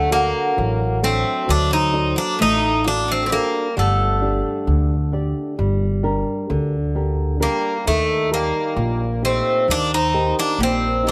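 A bright, metallic lead bouzouki sits up front carrying the melody in this short passage of Greek folk music for bouzouki band, its picked double strings partly doubled at the octave. A second bouzouki, mellower and set in the background, plays a quieter supporting line beneath it. A thumb-plucked flamenco guitar supplies dusky acoustic accompaniment, while a woody, growly upright bass, played pizzicato on steel strings, stands prominently in the low end. The music moves in a straight 9/8, with the harmony shifting from D to Gm at 3.8 seconds and on to Eb at 7.9 seconds, giving the mood a dark, reflective cast. Close, detailed miking and very little reverb keep the sound dry and intimate.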